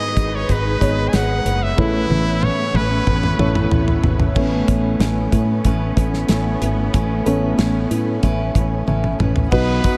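A brilliant, forceful trumpet leads this hopeful, warm stretch of piano-driven pop. Its scooped notes and vibrato carry the melody with a touch of delay before it drops out at 3.7 seconds and returns at 9.5 seconds. Beneath it, a mellow baby grand piano with long sustain and subtle chorus plays the accompaniment at a steady 93 BPM in 4/4, moving from G#m to Aadd9. A lush, distant string section holds sustained chords in the background, bowed with soft attack and portamento, while a punchy, foam-muted fingered electric bass sits up front and a dry 70s drum kit with a rolled-off top and tight kick keeps a straight feel and adds fills. At 4.4 seconds a full-bodied jumbo steel-string acoustic guitar enters with a fingerpicked riff, and the mix is soaked in a huge ambient reverb that gives it a dreamy glow.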